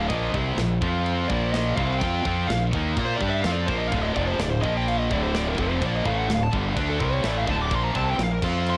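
A lightly reverberant home cassette recording captures this aggressive, heavy metal passage, cut from a longer piece and driving at 126 BPM in a straight 4/4 over Bb5, F5 and Dm chords. A dark, high-gain lead guitar plays a solo melody from the start, set against three picked rhythm guitars on the riff: a bright, scooped one and a tight distorted one in the background, and a very quiet, double-tracked high-gain one. Up front, a growly fuzz bass played with the fingers anchors the low end, while a mid-forward acoustic drum kit with crash cymbal, a medium-tuned snare and a tight kick comes in at 0.1 seconds.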